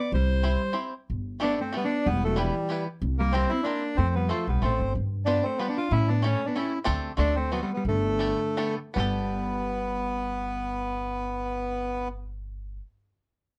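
A charming, whirling musette waltz in swung, rubato triple time, cut from a longer piece, where a reedy, dark bandoneon carries the melody up front over a clean, compressed hollow-body electric guitar's second line, a woody, thumpy pizzicato upright bass and a bright, twangy fingerpicked banjo entering at 0.4 seconds, with the tempo slowing from 6.9 to 9.0 seconds, all in light reverb.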